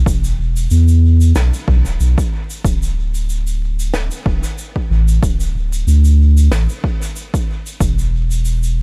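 Meditative and spacious, this short ambient dub fragment with a lightly swung groove rests on a deep, round, sustained sine sub bass held up front, while a punchy, overdriven electronic kick sits close beside it and a dark, smooth shaker and high-tuned brushed snare drift through a dub echo in a small acoustic room, all set in a dry mix dusted with vinyl crackle.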